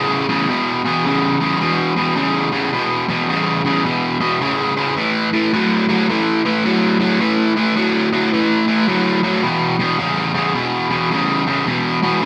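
This heavy, gritty rock passage, cut from a longer piece, moves at 107 BPM in 4/4 with a swung eighth-note feel. A lone overdriven electric guitar carries the whole 12.3 seconds, picked in its low register between E2 and F#3. The double-tracked tone sits up front, warm and gritty. The harmony rests on E5, shifts to A5 at 5.0 seconds, and returns to E5 at 9.4 seconds. A moderate stone-room reverb gives the live performance a solid sense of space.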